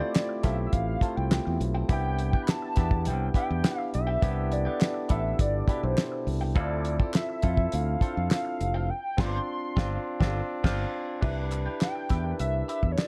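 Smooth and lush, this 1970s-style soul excerpt sets a hollow, woody square-wave lead with chorus over barky, lightly overdriven tine electric piano, a twangy wah-touched clean guitar riff in the background, a cloth-damped thuddy drum kit with a fat snare and dark cymbals, crisp group handclaps, and an up-front, bright fingered bass, all in a small room, with a band accent from 8.9 to 11.2 seconds before the chords settle on Cmaj7.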